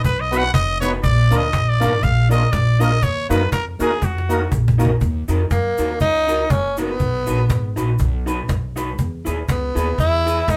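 Driving and energetic, this ska excerpt moves at 121 BPM in a lightly swung 4/4 in Eb minor, its chords shifting from B through Bb to Ebm and later to E. A growling, brilliant trumpet takes the solo from the start, up front and close-miked with scooped notes and vibrato, until 4.5 seconds, while a tonewheel organ adds lightly overdriven stabs through a slow rotary speaker with chorus vibrato. Underneath, a thumpy gut-string upright bass sits up front beside a woody cajon with faint snares and hard hands, and a grainy cabasa with tape echo rustles in the background. An electric guitar through a small old amp, dark, slightly broken-up and lo-fi with tape echo, plays accompaniment almost throughout. After a drum fill leads into the second half, a raspy, punchy tenor saxophone enters at 5.5 seconds to carry the melody in a lower register, all played live in one room with a moderate studio reverb.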